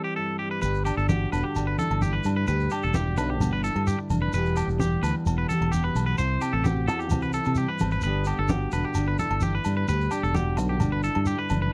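A straight, danceable 4/4 highlife groove with a dry, close 1970s-style studio sound, this sunny fragment opens with two clean electric guitars alone for the first 0.6 seconds, a dark, fingered one providing accompaniment and a bright, twangy, picked one spinning high arpeggios through slapback echo, before a round, punchy fingered bass arrives up front alongside soft-handed congas and a grainy shekere, with ringing agogo bells joining at 0.9 seconds as the chords move from C to G, E minor, then C and G again.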